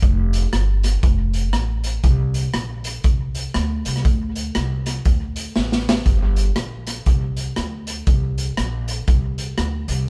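A swung 4/4 ska groove drives this mischievous, driving excerpt from a longer piece, led by a gritty, saturated garage drum kit up front, with punchy kick, high-tuned snare, rim clicks and hi-hat in a pumping small room and a brief fill at 5.6 seconds, alongside a woody, thumpy pizzicato upright bass on gut strings, the two playing live together in one room under light reverb.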